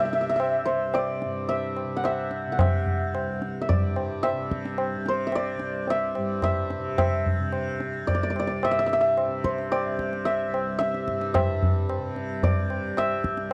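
This Hindustani classical piece, cut from a longer performance in raga Yaman on C, moves at a steady 110 BPM in a straight 4/4 with a meditative, radiant mood. The santur carries the melody up front, its hammered strings sounding mellow, ringing and shimmering within a compact upper range from C5 to F#5. Beneath it, the tanpura holds a low drone from C2 to C3, softly plucked with a warm, buzzing, shimmering tone and set quieter than the other parts. The tabla joins at 0.1 seconds, low-tuned and close with a short ring, sitting level with the santur. The music moves into a new section at 11.3 seconds and carries on to 13.5 seconds, captured in a dry, close 1970s-style studio sound with light reverb.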